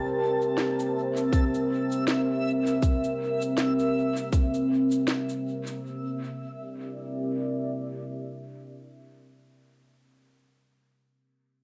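A tight, up-front electronic kick at 80 BPM, swung 16ths in 4/4 and an electronic cabasa with a woody snare, treated with dub echo and cassette tape, carry this peaceful, hazy ambient dub fragment in C mixolydian, where a deep, moody, detuned sawtooth pad with a sub octave, ring modulation and chorus sustains a C9 chord from C4 to E5 until 9.5 seconds, while a bright, granular, reversed triangle texture swells on E5 through the opening 5.9 seconds, all inside a small room reverb of a home cassette recording.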